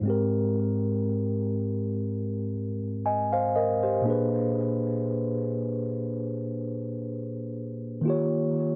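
A dry, gritty hardware recording places a mellow, clean tine electric piano up front, heard through its built-in speakers and touched with tape echo inside a moderate recital hall reverb. This tender, romantic R&B excerpt features the piano alone for its full 8.8 seconds, moving at an unhurried pace in 4/4 with a light swing on the sixteenths. The harmony drifts from Abmaj7 to Bb7b9 at 4.0 seconds and settles on Eb9 at 8.0 seconds, in a passage cut from a longer piece.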